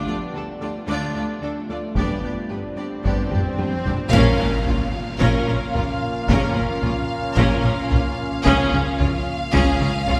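Heard through the long, wet reverb of a church or concert hall, this brooding, vast excerpt of hybrid orchestral and electronic film score moves at 111 BPM in a straight 4/4. It opens on a deep, detuned ambient pad with its own chorus and reverb, beneath bowed strings: an intense, distant studio violin section on a second line, lush violas in accompaniment, and a smooth studio cello section carrying the bass in the background. A round, tine-like synth pluck with a thumb-piano quality spins gentle arpeggios, also softened by chorus and sitting in the background. A taiko ensemble struck with heavy sticks enters at 2.0 seconds from a large, distant room, and an electronic swell rises from 2.7 seconds, joined by a drum fill from 3.3 seconds. At 4.1 seconds a band accent and impact open the second section. There, a symphonic violin section with vibrato sings a melody on a high F, very quiet mellow French horns hold sustained chords, and a focused double bass section deepens the bass, as the harmony moves from D minor and G to B-flat minor and C-sharp.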